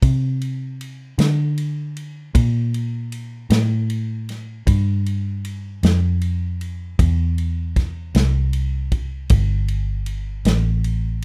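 A slow blues in 12/8 at 52 beats per minute, with a straight, laid-back yet rollicking feel, this short cut from a longer piece pairs a muted electric bass with a natural country drum kit for its full 11.2 seconds. The dark, round, foam-muted bass sits up front, fingered and amped, while the acoustic kit brings a punchy kick, a medium-tuned snare and ride cymbal from a studio room. Light reverb colours a rough home-demo mix.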